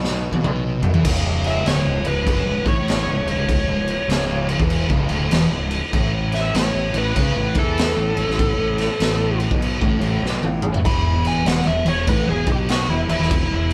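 A gritty, up-front garage drum kit opens with a fill, its punchy kick and high-tuned snare ringing in a small, pumping room. Two fuzz rhythm guitars, one dark and one warm, churn a swung riff in the background beneath a bright, growly overdriven bass in this heavy, hypnotic stoner doom passage. At 1.5 seconds a compressed lead guitar with wah and distortion begins its solo, and another drum fill arrives at 10.2 seconds, all captured with light reverb like a band playing live together in one room.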